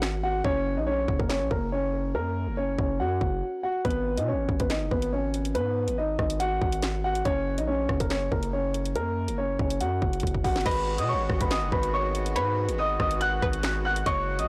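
Cold and tense, this half-time drill excerpt in G# minor at 141 BPM opens on a break, with a dark, intimate concert grand piano carrying the melody through digital delay, its action noise audible, over a distorted, heavy 808-style bass and an up-front drum kit of hard-clipped kick, sharp soft-clipped snare, bright hats, rim clicks, finger snaps and crash. After a drum fill at 10.2 seconds, a twangy, string-like resonator pluck with chorus and delay sits in the background while a reedy, sweet accordion holds sustained chords with light tremolo tuning, both entering at 10.7 seconds as the harmony lands on G#m7. The whole mix sounds blown-out and overdriven in a digital ambience.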